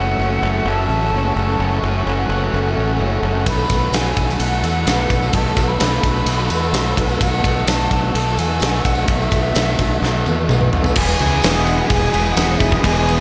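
A dreamy, reverb-soaked mix sets a blissful, hazy mood in this shoegaze-leaning dream pop rock cut, moving at 128 BPM in a straight 4/4 from F#m7 to B7sus4 and on to Emaj7. A breathy, mellow flute with vibrato and delay carries the melody over a retro chorused pulse-width pad, a very quiet, shimmering twelve-string acoustic guitar fingerpicking arpeggios, a biting overdriven guitar riff, a lo-fi guitar through a small old amp with reverse reverb, and a growly fuzz bass up front. A big, fat-snared drum kit and a jingly vintage tambourine arrive at 3.5 seconds, a drum fill leads into the new section at 11.0 seconds, and a double-tracked cranked stack guitar joins the riffing there.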